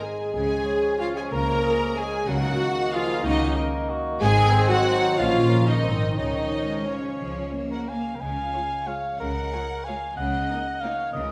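Sweeping and festive, this rubato orchestral ballroom waltz in 3/4, cut from a longer piece, carries its melody on a lush, distant violin section over a very quiet second violin line, a mellow cor anglais, and a dark clarinet and airy, hollow flute that drop out at 7.9 s, while background violas accompany, French horns and roomy trombones hold sustained chords until about 8 s, thumb-plucked harp arpeggios ring, and close, bowed cellos and an expressive double bass section anchor the bass, set in a wet scoring-stage reverb.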